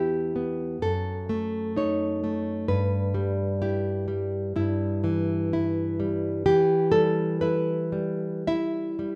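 Rubato 4/4 at 63 BPM carries this passionate, intimate romantic piece for solo nylon-string guitar through a 9.2-second fragment of a longer work, moving from Em through D#dim/F# and Em/G back to Em, with the fingerpicked guitar full-bodied and deep in classical tone, sitting up front in a rough home demo mix touched by light reverb and small room ambience.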